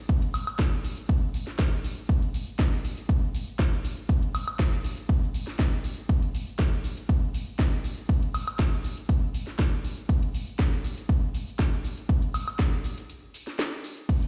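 A punchy, overdriven electronic kick opens this groovy, nostalgic house piece in straight 4/4, joined from the start by a layered house drum kit. The kick sits up front, while the kit fills in with a cracking snare, bright hi-hats, shaker, woodblock and crash cymbal. The kit carries its own overdrive, and its hats, percussion and cymbals pump through sidechain compression, giving the groove a breathing push. The whole passage plays as a drop, moving into a brief break at 13.1 seconds before the kick stops at 14.2 seconds and the kit at 14.3 seconds. The sound is that of a big system in a bare room, with a light stone-room reverb. It is cut from a longer piece.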